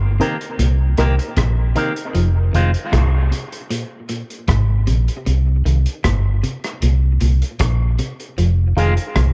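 Dub reggae in C minor at 77 BPM, this spacious, hypnotic excerpt rests on a dark, round, foam-muted fingered bass up front, with a muffled, lo-fi drum kit of punchy kick, hi-hat and rim click, a clean picked guitar tracing arpeggios in the background, and a bright, twangy envelope-filtered guitar and detuned, phaser-treated chord stabs that sound briefly at the start and again around 8.8 seconds. The three guitar and stab parts are carried by dub echo over light reverb as the chords move from Cm7 to Fm7 to C7(no3).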